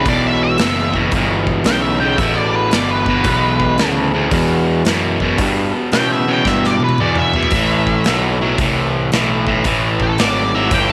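Swung eighths at 113 BPM in 4/4 drive this smoky, brooding fragment of blues rock and southern rock power-trio music in E minor, where a bright, up-front, double-tracked crunchy overdriven guitar riff sits over a growly fuzz picked electric bass, a dark octave-fuzz lead guitar carries the melody, and a big acoustic rock drum kit with a punchy kick and medium-tuned snare enters at 0.1 s and plays a fill from 6.5 to 7.5 s, leading into the harmony's move from Em to Am at 7.5 s, set in a small room with light reverb.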